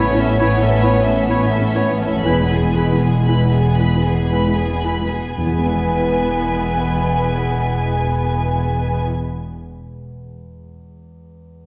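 Moving and hopeful, this excerpt of a cinematic, emotional film score unfolds in a rubato 3/4 that slows over its first 5.4 seconds, with a smooth, vibrato-rich violin section carrying the melody above second lines from an airy, hollow flute, a second violin section, a distant clarinet and a vintage-toned oboe, while a very quiet viola section adds accompaniment, a French horn section holds sustained chords, a thumb-plucked, ringing harp plays arpeggios, a concert grand piano adds deep-bass accompaniment that lingers until 11.7 seconds, smooth cello and focused double bass sections anchor the bass, and close, calf-headed timpani enter at 5.4 seconds, the ensemble heard from further back in a wet scoring-stage reverb.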